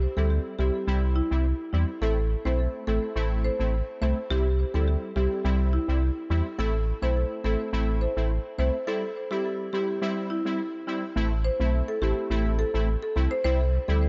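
A straight 4/4 dancehall groove drives this sunny, summery excerpt, with a deep, up-front sub bass doubled at the octave, a woody, close-miked marimba melody on medium mallets trailed by tape echo, and punchy, detuned sawtooth brass stabs with chorus and a filter sweep, moving between C and Am chords in an echo-heavy, softly ambient small-room mix that reaches a break from 8.9 to 11.2 seconds.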